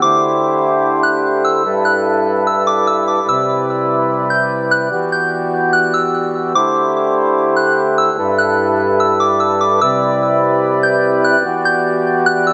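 A half-time 4/4 pulse at 147 BPM carries this blissful, floating hip hop excerpt in G major, where an up-front, reedy accordion with slow beating holds dark, smooth sustained chords cycling through D7sus4, G6, Cmaj7 and Em7, while a soft, pure FM synth bell with a fast attack and long release sings a high melody spanning D6 to G6 through chorus, tremolo, low-pass filter and delay, the whole mix resting in a lush hall reverb.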